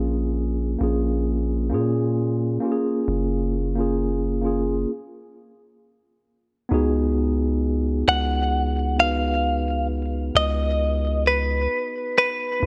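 This contemporary R&B excerpt moves at a slow 66 BPM in 4/4 with a light sixteenth-note swing, carrying a longing, late-night mood. A mellow tine electric piano, sounding as if through its built-in speakers, plays the accompaniment up front over a deep, sine-like 808-style bass whose long, sustained notes start with a fast attack and then decay. The harmony moves from A#m7 to F#maj7, and a stop arrives from 4.9 to 6.7 seconds before the second section opens on C#9sus4. At 8.1 seconds a direct-recorded clean electric guitar enters with the melody, its bright, twangy picked tone compressed and colored by tremolo. Light reverb gives the mix a soft sense of space.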